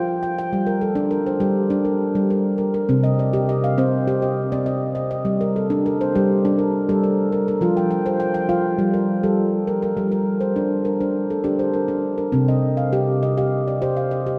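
A solo handpan opens this short world-music fragment in G minor, its stainless-steel tones ringing out with sharp finger strokes across a range from C3 to G5. The mood is meditative and gentle, moving at 102 BPM in a straight 4/4. The harmony circles between G minor and C minor, touching on an F5 chord at the start and again near 7.6 seconds. The handpan sits up front, close-miked and full, while a vast cathedral-like reverb with a long 5.7-second decay lets each note bloom into an echoing space. After a first section, a second one begins at 10.0 seconds and runs to the cut at 14.4 seconds, returning to C minor along the way.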